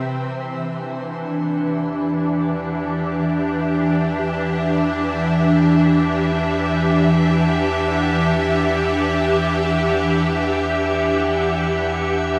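A dark, warm production bathed in a wet shimmer reverb sets a serene, peaceful ambient scene in free time, tuned to A4 = 439 Hz and resting on a single Em9 chord in this fragment of a longer piece. Up front, an evolving wavetable pad holds bright, detuned sustained chords that morph slowly, thickened by ensemble chorus and its own reverb. Beneath it, a round analog bass sits deep and low, gradually fading in across the whole passage. At 1.3 seconds a very quiet glass-harmonics texture arrives, its glassy overtones drifting calmly with a slow attack and long release. From 2.4 seconds a soft synth bell adds gentle, mellow arpeggios with a pure, full-bodied FM tone and decaying notes, kept very quiet and colored by chorus.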